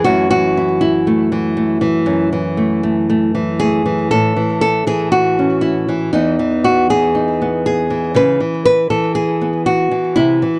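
Pastoral and hopeful, this brief cut from a longer folk piece features a solo fingerpicked nylon-string guitar at 119 BPM in a straight 4/4, its small, up-front acoustic tone touched with tape echo as it moves from F#m9 into a second section at 4.1 seconds through A, Emaj7 and C#m7, captured in a dry, close 1970s-style studio sound.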